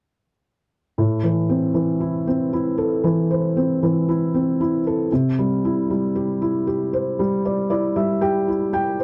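Set in a straight 4/4 at a slow 58 BPM, this short pop excerpt, cut from a longer piece, moves with an unhurried, steady pulse. A felt-muted upright piano carries the whole passage as accompaniment, ranging from A2 up to G5, its soft, mellow tone sitting intimate and up front. The harmony rests on A minor before shifting to C add nine at 5.1 seconds, giving the tender mood a hopeful lift. Near the close, the piano adds a fill from 7.2 seconds. Light reverb touches the instrument, yet the sound keeps the dry, close feel of a 1970s-style studio recording.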